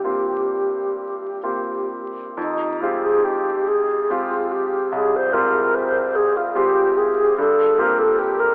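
A mellow, wooden-headed alto flute carries the melody from the first moment, its pure tone shaped by a gentle vibrato and a soft attack as it moves between Eb4 and C5. Beneath it, a clear, natural-sounding grand piano supplies the accompaniment from C2 up to G4, sitting a little lower in the balance than the flute. This short, impressionist classical passage in F minor is cut from a longer piece and unfolds slowly and freely in 12/8, around 41-51 BPM counted in dotted quarters, with a wistful, hazy mood. The harmony opens on C7sus4, shifts to Fmadd9 at 2.4 seconds as a new section begins, and settles on Gm7 at 7.4 seconds. A wet cathedral reverb places the duo in a vast, echoing space, while vinyl crackle and a narrow telephone-like tone lend the recording a faded, dreamlike patina.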